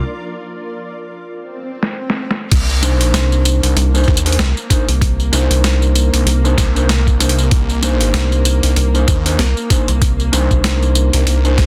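A dense, heavily limited and nearly dry mix opens this gritty, playful glitch hop excerpt in C minor, moving at 96 BPM in 4/4 with a 58% swing on the sixteenths over a Cm9 chord. A mellow, clean electric guitar plays dark fingered stabs from the start, its pitch warbling and pumping under sidechain with dub echo trailing behind. An electronic swell enters at 1.4 seconds, and the boom bap sampler-style kit slips in at 1.8 seconds with a drum fill, its high-tuned snare, hi-hat, tambourine and crash all muffled by low-pass filtering. The drop lands at 2.5 seconds, bringing a thumpy, pitched-down kick, a swirling, thick detuned saw bass with phaser and tube saturation, and a rich symphonic string section holding bowed chords with light vibrato, pumping in the background. A rubbery, hollow square bass with a resonant filter pluck joins soon after, sitting up front on a single low C and adding a bouncy, wave-folded edge to the low end.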